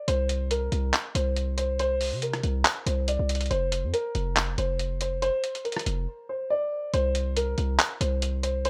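A punchy, heavy 808-style bass with a sine core, a noise layer, a fast attack and a decaying envelope sits up front in this brooding, hard-hitting trap excerpt at 140 BPM in a half-time feel, under a dark, mellow concert grand piano carrying a short-sustained vintage melody over Bbsus2/C and F5 chords. A muffled, compressed sampler-style kit of handclaps, hi-hat and rim click, re-recorded in a small room, drives the groove and drops out from 6.1 to 6.9 seconds. The dry, rough home-demo mix keeps every part close and in the listener's face.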